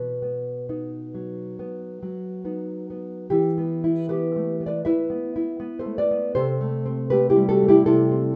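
A romantic piece for solo classical guitar in E minor, this short excerpt unfolds at a rubato 65-84 BPM in 4/4 with an intimate, wistful mood. The nylon-string guitar sits up front with a dark, full-bodied tone, its thumb-plucked notes ranging from B2 to E5, and finger squeak audible on the strings. Light reverb surrounds it as the harmony moves from B to Em at 3.3 seconds and on to Am/C at 6.3 seconds.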